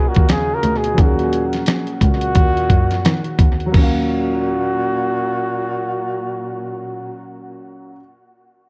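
A swung 87 BPM jazz-hop groove in 4/4 opens this smoky, nocturnal Eb minor fragment, carried by a gritty, compressed sampler-style drum kit with a thumpy kick and fat snare sitting up front until it drops out at 3.9 s. Over an Ebm7 chord, a breathy flugelhorn sings the whispered, intimate melody with vibrato and tape echo, shadowed by a darker tenor saxophone with scooped notes on a low second line. A mellow, boxy grand piano accompanies to the close at 8.0 s, while a bowed cello with an earthy, nasal bite holds the bass, all set in a small room ambience with an echo-heavy, cassette-tape finish.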